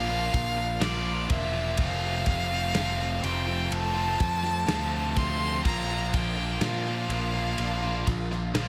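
Post-rock with a hopeful, soaring mood, cut from a longer piece, where a clear, biting violin with vibrato and digital delay carries the melody up front over a growly, punchy bass, two bright overdriven guitar riffs in the background (one crunchy with phaser), a loose indie drum kit of kick, snare and ride entering at 0.3 seconds, and a very quiet, pure organ-like pad holding sustained chords as the harmony moves from Bb to Fadd9 and back, all set in light small-room reverb.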